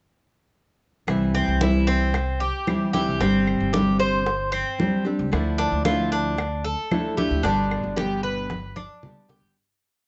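A relaxed Cuban son and guajira piece opens at 1.1 s with bright, fingerpicked nylon-string guitar strummed with muted slaps up front, a woody pizzicato upright bass playing a syncopated figure, and, in the background, tight high-tuned bongos with hand bell, close, dry claves marking a two-bar time line and thick-skinned congas with slaps and open strokes, joined at 1.3 s by a metallic, double-strung Cuban tres picking an arpeggiated guajeo, set in a moderately reverberant large studio over a progression from C through Gsus4 and Dmadd9 to G, before a drum fill arrives during the fade-out.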